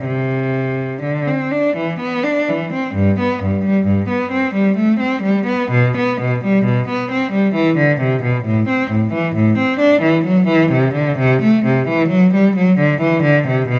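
A single bowed cello, clear and focused with vibrato and placed up front, plays alone for the full 13.8 seconds of this serene, dance-like, baroque-style suite movement in G major, cut from a longer piece and moving at an unhurried 65 BPM in 3/4 with uneven, rubato beats, ranging from G2 to D4 within a moderate recital-hall reverb captured by close, detailed microphones.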